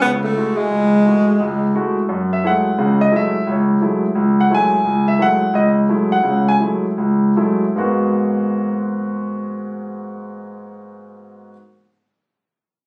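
A breathy, whispered tenor saxophone opens this short jazz excerpt alongside a warm concert grand piano with deep bass, playing an intimate, vibrato-laced melody that ends at 1.7 s and leaving the piano to carry a spiritual, hypnotic swing at 148-174 BPM over F#m9 and then G#m9 chords, slowing down between 4.8 and 7.8 seconds, all heard through the club reverb of a phone recording made in the room.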